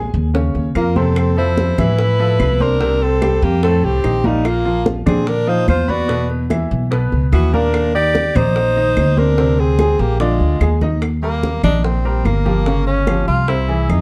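An alto saxophone carries the melody up front with a warm, vibrato-laden jazz tone, entering at 0.8 seconds and holding the lead until a fill at 10.8 seconds. This sunny, danceable Afro-Cuban jazz excerpt moves at 146 BPM in a straight 4/4, its harmony drifting through rich chords such as Fmaj7, F9, Ebmaj7 and Bb13 before closing on a Caug. A bright tenor saxophone with scooped notes plays a second line beneath the alto, then takes a solo from 11.0 seconds to the end. Underneath, a growly, woody pizzicato upright bass sits prominently in the mix, while a clear baby grand piano with short sustain supplies the accompaniment. In the background, thick-skinned congas played with soft hands, tight, hard-struck bongos and compressed, saturated claves fill out the percussion. Light reverb and a dark production give the whole recording a cozy glow.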